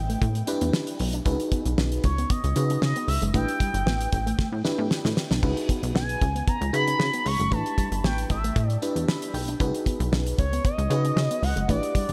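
A smooth, vibrato-laden portamento lead carries the melody through chorus and tape echo in this slick, late-night early-eighties boogie funk excerpt. It rides over a punchy, wave-folded analog bass sitting up front, a damped 70s kit with a fat snare and dark cymbals, glassy bell-like FM electric piano chords, and a bright, twangy envelope-filtered guitar riff tucked in the background. The harmony shifts between A9sus4 and C#9sus4, with a drum fill at 4.4 seconds and an electric piano fill at 8.8 seconds, all bathed in a dreamy, reverb-soaked mix.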